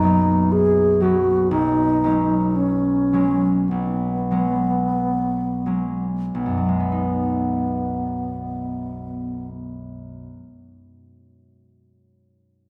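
In a rubato 4/4 that slows over the first 6.3 seconds at 40-61 BPM, this pastoral, dreamy impressionist classical duo in B major sets an expressive alto flute melody with a pure, straight tone and crisp attack over bright, ringing, fingerpicked concert harp, both up front yet heard from further back in a reverberant scoring-stage space, moving from Bmaj9 and G#m11/B to B6 before the flute stops at 9.5 seconds and the harp rings on to 10.4.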